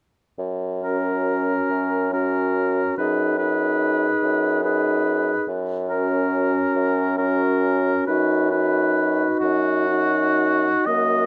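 Close, detailed microphones and light reverb frame this warm, lyrical passage, cut from a slow romantic movement for wind quintet that flows in a rubato 6/8. A bassoon with light vibrato and a vintage tinge sits up front on a single low note from 0.4 s. At 0.8 s it is joined by an oboe carrying the second line, also up front with gentle vibrato, while a distant, roomy French horn and a clarinet set in the background fill in the accompaniment above the bassoon's bass.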